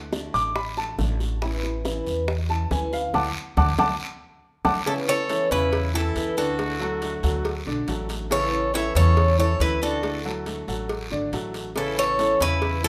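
A straight 4/4 pulse at 139 BPM drives this danceable, warm Cuban son and guajira passage in A major, cut from a longer piece and swaying between D and Aadd9 chords. Tight, high-tuned bongos and cowbell played with soft hands sit close and dry, joined by a raspy guiro, while a woody, thumpy upright bass with gut strings sits up front beneath fingerpicked flamenco guitar that carries audible finger squeak. The clear, vintage concert grand piano spins smooth arpeggios with deep bass and takes a solo through the opening 4.9 seconds, where a band accent lands at 3.1 seconds and a drum fill follows at 4.2 seconds. From 4.9 seconds a metallic, picked Cuban tres with double strings steps forward to carry the melody, with a punchy, vibrato-laden trumpet in a pop style adding a bright second line. A moderate large studio reverb gives the ensemble a sense of space.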